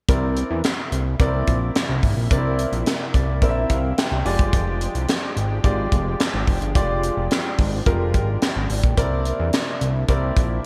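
Slick and danceable, this early-eighties boogie funk groove sets a fat, detuned sawtooth analog bass with a filter sweep and a tight, up-front acoustic drum kit of kick, high-tuned snare, hi-hat and handclaps beneath a clear grand piano with slapback echo, which plays a fill from 2.9 to 4.5 seconds, while a lush, airy unison pad with chorus sustains C9 and Fm69 chords in the background, the whole mix bathed in a hall reverb that gives a big arena sound.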